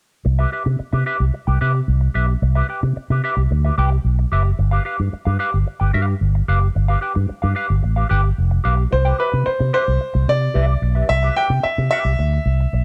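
A mellow electric guitar opens at 0.2 s with a clean, dark, fingered tone colored by wah, playing accompaniment over a Cmaj7 chord that gives way to G7. Almost at once a fingered electric bass joins, amped, bright and punchy through its envelope filter, sitting up front as the foundation of this celebratory, danceable disco excerpt at 111 BPM in a straight 4/4. The music is in C major, tuned to A4 = 439 Hz. At 8.9 s a new section returns to Cmaj7, and a clear grand piano steps up front with a smooth, vintage-toned melody of short sustain. The whole passage sits in a studio ambience with a warm production.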